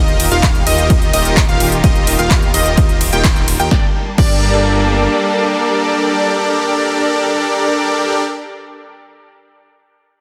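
Anthemic and euphoric, this excerpt of festival progressive house at 128 BPM in G minor opens on a drop where huge, bright supersaw chords lead the riff up front, a punchy plucky unison lead spins arpeggios in the background, dark, veiled muted strings hold sustained chords, and a fat analog bass pumps beneath them all until 5.1 seconds, while an overdriven, up-front electronic kick and a big-room kit with crisp hats, claps and punchy snare drive the groove until 4.3 seconds, with a band accent at 3.2 seconds as the harmony moves from Ebadd9 to Gmadd9 at 3.7 seconds in a dense, heavily limited mix with light reverb.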